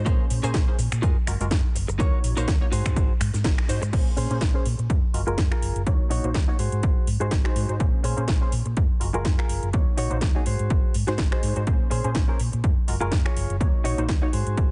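Sensual and groovy, this filtered disco house excerpt in Bb minor at 124 BPM with a swung 16th feel opens on a drop that lasts until 3.9 seconds, with a band accent at 3.4 seconds, then a filter sweep runs from 3.9 seconds to the end. A punchy overdriven electronic kick and a layered house kit of cracking snare, metallic hi-hats, shaker, finger snaps and crash cymbal drive it, with pumping on the kit. A dark, round hollow-body short-scale fingered electric bass, a mellow detuned polysynth comp with chorus and phaser, and a clean, direct-recorded picked electric guitar riff all pump and sit behind a low-pass filter. They cycle through Bbm9, Gbmaj9, Ebm7 and Ab7 under a digital ambience.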